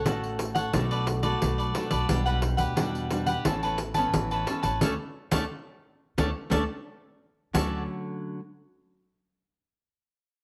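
In a straight four-four, this joyful, sunny samba and choro excerpt pairs a jingly, close and dry pandeiro played with soft hands against crisp picked cavaquinho, fingerpicked classical nylon-string guitar and a woody, thumpy pizzicato upright bass. The whole band hits a shared accent from 4.8 s to 7.5 s, all in a small room with a moderate echo-chamber reverb.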